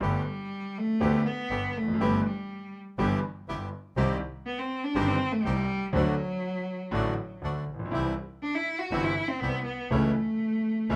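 A bowed cello carries the lead from the first moment of this melancholic, passionate tango excerpt, its smooth, even tone shaded with vibrato, while a concert grand piano, bowed double bass and bandoneon sound together beneath it. The piece moves at 121 BPM in 4/4 with a rubato feel, set in G major, and the harmony drifts from Gadd9 through Em/G and a darkening Cm before passing to D, C and A/C#. The piano accompanies with a deep bass and a vintage, smooth character, sitting close to the listener alongside the prominent cello. The double bass anchors the low end with an earthy, far-off bowed sound and light vibrato. The bandoneon adds short, reedy stabs that come across dark, dry and full, as if heard from just inches away. A moderate club reverb gives the ensemble the feel of an intimate room.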